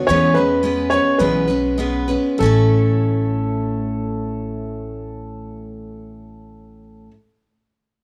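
A home cassette recording with moderate studio reverb gives this short honky-tonk and classic country passage a homespun, sunny, down-home character in A major. It moves in a straight 4/4 at 95-112 BPM, slowing down over the opening 2.4 seconds as the harmony moves from E6 to A. An upright piano carries the melody in a compact register, its woody, smooth, vintage tone sitting up front with long sustain and a plate reverb. A picked steel-string dreadnought acoustic guitar supplies bright, full-bodied accompaniment across a broad range, also up front and treated with plate reverb. Underneath, a pizzicato upright bass adds a thumpy, dark foundation. All three play from the first moments until about 7.1 seconds, with the guitar ringing on briefly to 7.2 seconds, as the fragment is cut from a longer piece.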